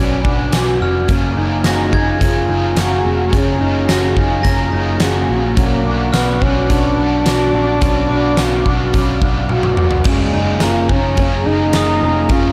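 Dreamy and blissful, this dream pop excerpt moves at 107 BPM in a straight 4/4 around F# major, shifting between Bm and F#maj9 chords. A huge arena drum kit with a fat snare, punchy kick, cymbals, tambourine and toms comes in at 0.2 seconds and plays a fill from 9.5 to 10.1 seconds, where the music moves into a new section. Underneath, a vintage muted picked electric bass sits dark and round, while a double-tracked, biting overdriven guitar plays picked accompaniment with harmonic tremolo and subtle chorus. A swirling sawtooth pad, detuned and slowly evolving, holds sustained chords through phaser and chorus, and a mellow, clean electric guitar plays fingered arpeggios in the background, drenched in lush chorus and tape echo. At 1.7 seconds a warm French horn takes the solo melody in a classical style with light vibrato, as a quiet glockenspiel struck with hard plastic mallets rings out bell-like through tape echo from a boxy small room. 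The whole mix carries studio reverb and has a dry, gritty hardware character.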